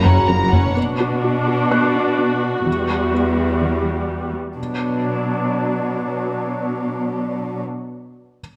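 A straight 4/4 pulse at 126 BPM drives this relentless, futuristic cinematic fragment in B minor, where up-front bowed cello and viola sections carry the body beneath a distant, lush violin melody with a focused second violin line behind it, while a brief opening chord from a French horn section and a soft-attack trombone section, a short F# from a mellow tuba and double bass section, a punchy, wave-folded analog bass riff, squelchy resonant blip-pluck arpeggios with phaser, and a felt-muted upright piano with audible action noise and delay sit in a recital hall reverb as the harmony moves from Bm to Emadd9 at 2.7 s under a filter sweep from 0.8 to 4.6 s.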